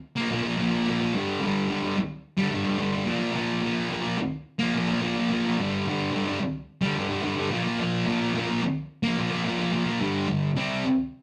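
A rough rehearsal-room recording with moderate studio reverb carries this swaggering, raw rock clip at 108 BPM in a straight 4/4, where a thick, bright, double-tracked fuzz guitar plays alone and up front from 0.2 to 10.9 seconds, its distorted, picked tone moving between Bb5 and G5 power chords across a range of G2 to C4.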